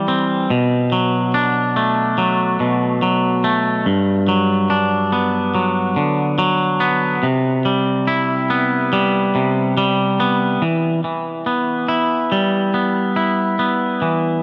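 A vast, ambient reverb with a long 3.9-second tail surrounds a clean, twangy electric guitar that sits up front, its fingered notes trailing off through tape echo. This slow rock excerpt at 71 BPM in 4/4 feels cathartic and cinematic, the guitar moving from a rootless Am7 through Bm7, Gmaj7 and Cmaj7 before settling onto Em at 10.6 seconds for the closing passage.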